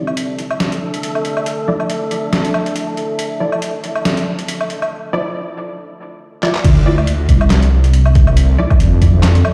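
Drenched in a moderate echo-chamber reverb and played back through a big sound system in a bare room, this dark, brooding deep dubstep excerpt moves with a swung, half-time feel. A moody, detuned sawtooth pad sustains Dsus2 chords while a muted, filter-swept chord stab with dub echo builds tension, an airy, wind-like noise texture breathes in the background, and a gritty, pitched-down trip hop sampler kit of snare, hi-hat, handclaps, woodblock and crash cymbal plays throughout, with a brief break from 4.9 s. At the drop at 6.6 s, a heavy, saturated wobble bass sits up front alongside a layered electronic kick as the harmony shifts to Dmadd9.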